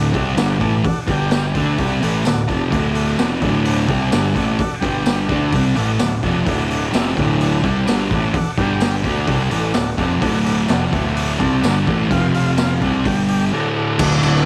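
A straight four-beat garage rock groove on a raw, gritty small-room drum kit with a punchy kick and crash, hi-hat and snare struts under an up-front, double-tracked fuzz guitar riff, while a buzzy overdriven combo organ holds heavy-vibrato chords, a round fuzzed bass and jingly tambourine sit in the background, and light studio reverb wraps this swaggering excerpt, whose chords keep snapping back to D.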